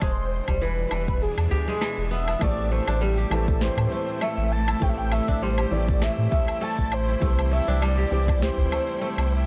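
A breathy, flute-like synth lead with tremolo, chorus and analog delay carries the melody over a mystical, hypnotic organic downtempo groove at 100 BPM in A minor. A bright, lush string section and a round sub bass both pump to the sidechain, while a crisp kora rings out arpeggios through tape echo and a filter sweep during the opening 2.4 seconds. An electronic kick, sharp snare, woodblock and cabasa sit with a deep udu in the background, the kick dropping out from 1.2 to 2.4 seconds, before a muted felt upright piano with audible action noise joins at 2.4 seconds, the whole mix dry and gritty in this passage cut from a longer piece.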